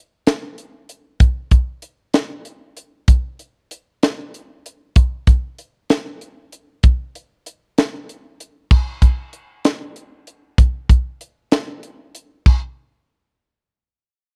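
A tight funk drum kit comes in at 0.3 seconds, opening this short jazz fragment cut from a longer piece with a bright, funky mood. The groove moves in 6/8 at 64 beats per minute counted in dotted quarters, with a straight feel. Kick drum, snare, hi-hat and crash cymbal make up the kit, which sits up front with a mid-forward character, a high-tuned snare and a punchy kick drum. The recording is dry and close, in a 1970s studio style with little reverb, and the kit sounds like an acoustic set in a small room. The music moves into a new section at 8.7 seconds, and the drums stop at 12.6 seconds, just before the fragment ends.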